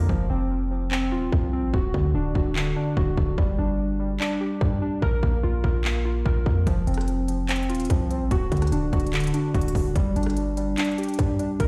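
Brooding and hard-hitting, this half-time trap cut from a longer piece is led by warbling, lo-fi synth keys playing nostalgic, mellow arpeggios, their detuned square, sawtooth and triangle tones shaped by chorus, delay and a low-pass filter sweep. Beneath them a punchy, heavy 808-style bass with a sine core and noise layer hits with a fast attack, while a produced electronic trap kit of hard-clipped kick, crisp hi-hats, handclaps and rim clicks comes in at 0.1 seconds, re-recorded up front in a large room. The whole track sounds as if played through a big sound system in a bare stone room, with a break running from 0.1 to 6.7 seconds.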